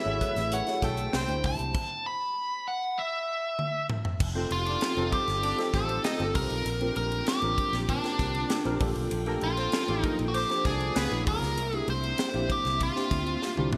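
Bright, glossy 1980s digital production with plate reverb frames this urban, upbeat jazz-funk pop excerpt, where an up-front, nasal overdriven lead guitar with a parked wah carries the melody over a worn, slightly out-of-tune tine electric piano with ensemble chorus, a round, foam-muted fingered bass, crisp fusion drums with a high-tuned snare, tight kick and gated reverb, faint distant congas, a clear horn section on a second line in the background, and soft sul tasto chamber strings holding sustained chords, as the groove breaks for a stop from 1.7 to 4.2 seconds before a drum fill relaunches it.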